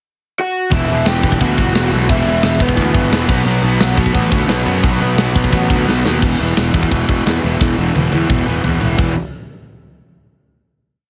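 A straight, punk fast groove in 4/4 drives this angry, urgent punk rock piece, led by a tight metal drum kit sitting up front with a medium-tuned snare, tight kick, hi-hat, crash and toms in a big room. During the brief pickup, a dark, overdriven lead guitar through a small cranked amp enters with a motif-based melody of call phrases, partly doubled in octaves, before stopping at 3.3 seconds. Underneath, three guitars pound driving eighth-note power chords: a crunchy overdriven guitar, a bright, compressed distorted electric guitar set in the background, and a double-tracked cranked stack guitar, also in the background, that drops out at 6.2 seconds. A growly, punchy fuzz picked electric bass, direct and amped, pushes its own driving eighth-note line. Drum fills carry the song into its outro and again toward the final chord at 9.0 seconds, all within a dry, heavily compressed radio sound.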